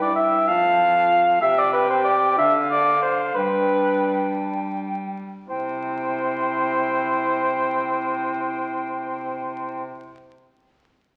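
Stately and festive, this short excerpt from a renaissance-style consort dance in C major moves in a straight 6/8 at 53-64 BPM and slows from 0.5 to 5.5 seconds, with a pure, wooden alto recorder carrying the melody over an up-front cor anglais second line with a smooth top, a distant, roomy trombone accompaniment and a reedy, gut-string cello bass, all steeped in recital hall reverb and the crackle of a very old 78 rpm record as the chords pass through F, C5, Dm and G before settling on C at 5.5 seconds.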